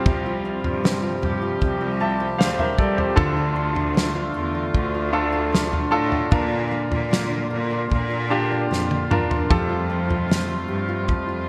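This short excerpt has a bright, 1980s-style digital sheen, bathed in a moderate plate reverb. It is an emotional, heartfelt pop ballad in a straight 4/4, moving through Csus4, Dm, Bb and Fadd9. A brilliant, polished concert grand piano sits up front with deep bass and short sustain. A woodwind section holds warm, tight sustained chords with light vibrato, and a jumbo steel-string acoustic guitar fingerpicks full-bodied arpeggios in the background through a subtle chorus. A bowed cello section carries the bass line with a biting, intense tone and light vibrato. A loose indie drum kit on kick, snare and toms sits up front, with a small-room sound, fat snare, tight kick, rolled-off top and gated reverb, and it plays a fill from 8.7 to 9.5 seconds.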